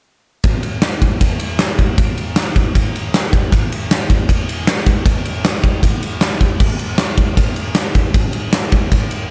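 Energetic and swaggering, this short rock cut in straight 4/4 features a big acoustic drum kit playing on its own from 0.4 to 9.2 seconds. Crash and ride cymbals ring over a punchy kick and a medium-tuned snare, all sitting up front in an airy, polished big-room sound with a light touch of reverb.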